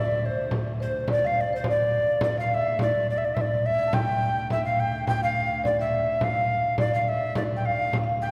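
The recording sits in a church or concert hall, with a long, wet reverb that hangs for 2.8 seconds and gives this medieval dance a mysterious glow. At 105 BPM in a straight 2/4 in D minor, the mood is driving. A breathy, mellow tenor recorder carries the melody up front, its tongued notes marked by a soft chiff, a touch of vibrato, rolled-off highs and a slightly unsteady tone. Alongside it, a very quiet marimba with medium mallets on rosewood bars adds a woody second line. A single bowed, fretted viola da gamba holds a low D drone with light vibrato and a biting, ringing edge. A small, bright frame drum enters at 0.5 seconds and sits close and present, and the dance moves into a new section at 2.8 seconds before this excerpt from a longer piece ends at 8.3 seconds.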